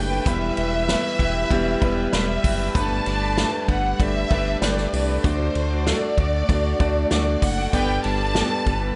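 A lush, expressive violin section carries the melody up front in this hopeful, anthemic piano-driven pop excerpt, over a clear, woody upright piano, a round, deep analog bass, a distant, roomy acoustic drum kit played with bundle sticks, and, very quietly, a reedy string section holding sustained chords and a clean, picked electric guitar riff, while a bright, intense second violin line enters in the background at 2.8 s, the whole set in light small-room reverb.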